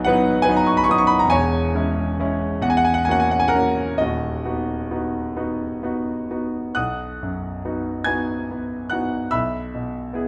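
A rubato sway in 6/8 carries this tender, dreamy romantic nocturne for solo grand piano, its clear, smooth, vintage tone with short sustain sitting up front in a moderate recital hall reverb, ranging from deep bass to high treble across a brief passage cut from a longer piece, shifting into a new section at 6.7 seconds.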